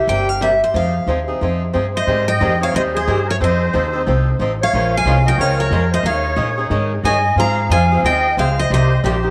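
A moderate plate reverb gives this swinging, bittersweet stretch of acoustic string swing a roomy sheen, with a bright, full-bodied steel-string guitar carrying the melody up front over a boxy, fresh-stringed swing guitar picking out the accompaniment. A woody, thumpy upright bass with gut strings anchors the low end, and at 1.9 seconds a reedy musette accordion enters with a shimmering second line. The chords move from C7 and Fm7 through F7, Bbm7 and Eb7sus4 to Ab6, closing on Cm7 in a passage cut from a longer piece.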